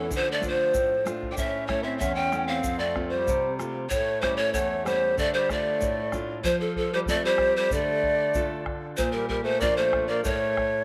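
Andean folk with a festive yet wistful air, cut from a longer piece in a straight two-beat feel: a breathy, woody pan flute carries the tongued, chiffy melody up front, its vibrato unsteady, over a distant, roomy alto saxophone second line with light vibrato and a soft attack. A fingerpicked nylon-string guitar with fresh, full-bodied strings and audible finger squeak moves through chords such as Dm, F and Bb, while a deep, dark bombo sits close and dry and a grainy, bright egg shaker sits close. A wet spring reverb hangs over the ensemble, and the music turns to a new section at 6.4 seconds.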